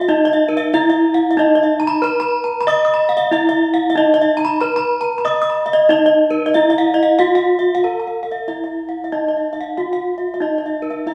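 Gamelan in Eb pelog at 93 BPM, brilliant and ceremonial, this short excerpt pairs two up-front bronze metallophones struck with horn mallets for the full 11.1 seconds. One carries the melody between Eb4 and Eb5 with a bright, ringing tone, while the other plays arpeggios reaching up to Eb6, its sound boxy and warm. Both share paired tuning whose shimmering beats glint through a wet stone room reverb, captured as a group playing live together.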